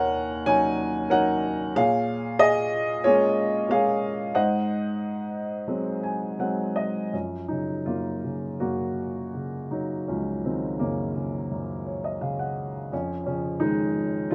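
In a rubato 4/4 drifting between 80 and 94 BPM, this hopeful, lyrical classical passage for solo baby grand piano, cut from a longer piece in Gb lydian and tuned to A4 = 441 Hz, rings clear and open with long sustain, placed up front in light reverb. It moves through Ebm7, Bbm7 and Ab7 before settling on Gbmaj7 as a new section begins at 7.1 seconds, with brief fills at 5.7 and 11.5 seconds and a closing turn to Dbadd9/F.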